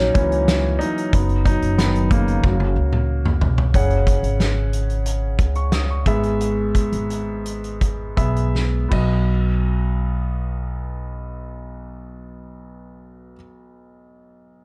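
This is a dark, intimate studio recording with light reverb, cut from a longer piece of uplifting, hopeful piano-driven pop in B major, moving at a straight 4/4 between 78 and 92 BPM. A clear upright piano carries the accompaniment across a broad range, with audible action noise and a long, polished sustain that sits up front. Beneath it, a pizzicato upright bass on steel strings adds a woody, warm low end. A loose indie drum kit sounds roomy and distant, with a fat snare, tight kick, toms, hi-hat and a crash whose rolled-off top keeps the cymbals subdued. The opening passage features the piano, and drum fills twice push toward new sections. The music slows from 3.7 seconds, the drums stop at 9.1 seconds, and the piano rings on until 14.6 seconds, settling from F#sus2 and E/G# onto a B chord.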